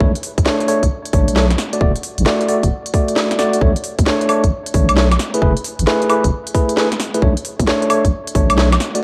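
A tine electric piano opens this soulful, late-night UK garage fragment, sounding alongside a deep, wobbling bass and a tight electronic kick from the first moment, with the garage kit's crisp hi-hats, cracking snare and woodblock joining at 0.2 seconds. The two-step groove moves at 133 BPM in 4/4 with a 65% swing on the sixteenths, set in B dorian. Up front, the piano plays clean stabs over Bm9, a rootless E9sus4 and a rootless F#m11, coloured by vintage 12-bit sampler grit, cassette tape and tape echo, as if heard through built-in speakers. The bass is a dark, sustained triangle-and-sine tone with a fast attack, compressed and thickened by chorus, sitting prominently between E1 and D2. Both drum parts are layered and tape-warm, re-recorded in a large room, and the whole cut has the feel of a home cassette recording with light reverb, running to 9.0 seconds.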